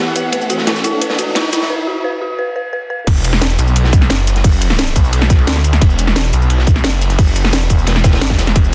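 Tense and futuristic, this excerpt of dark technical drum and bass at 175 BPM in E minor opens with veiled, muted strings holding sustained chords and an eerie, inharmonic synth bell arpeggiating with chorus and tape echo, both pumping against the sidechain, while a riser and two drum kits (a gritty, rolled-off breakbeat kit with dark cymbals and an overdriven electronic kit with a cracking snare, bright hats, cabasa and crash) drive a filter-swept build-up and break before the drop at 3.1 seconds, where a tight, up-front kick and a snarling, growling detuned saw bass with distortion and tube saturation hit under a dense, heavily limited master.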